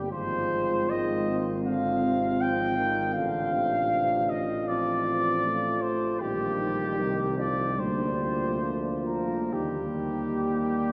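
Bathed in the long, wet reverb of a church or concert hall, this serene, hymn-like classical passage for brass band moves at a rubato 62-81 BPM in 4/4, cut from a longer piece. A mellow flugelhorn carries the lyrical melody up front with light vibrato and a soft attack, while a dark French horn section sits distantly behind it on a second line. A clear trombone and a smooth-topped euphonium fill the accompaniment, and a soft-attacked tuba anchors the bass through chords moving from Fm7/Ab to a closing Eb.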